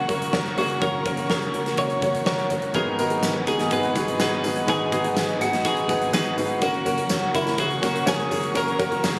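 A straight 4/4 pulse at 124 BPM drives this earnest, bittersweet piano-driven pop excerpt, carried by a huge arena drum kit with a fat snare, punchy kick and hi-hat in a pumping hall-like room. A clear, polished baby grand sits up front with the accompaniment, while a vintage muted fingered electric bass adds a dark, round, amped low end. A twangy, compressed twelve-string electric guitar, picked and clean, carries the melody, and a full-bodied jumbo steel-string acoustic guitar plays a fingerpicked riff in the background. A very quiet, lush studio string section holds bowed, vibrato-rich sustained chords with a smooth top, and a jingly tambourine joins in the background at 2.8 s as the harmony moves from F# to G#m7 before returning to F#. The mix carries a moderate large studio reverb with a club-like ambience, heard as if captured on a phone in the room.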